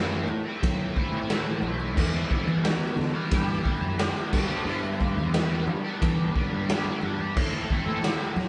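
At a straight 89 BPM in 4/4, this trippy, dark psychedelic rock excerpt in A dorian moves through Am, Em and G as an overdriven, double-tracked stack guitar churns a bright riff through a rotary speaker over round fuzz bass, with a buzzing, shimmering sitar melody in the background, very quiet high-tuned congas entering at 0.3 seconds, and a gritty, saturated garage drum kit with punchy kick, crash and ride arriving at 0.6 seconds and playing a fill at 6.7 seconds, all in a live room with moderate reverb and a rolled-off top.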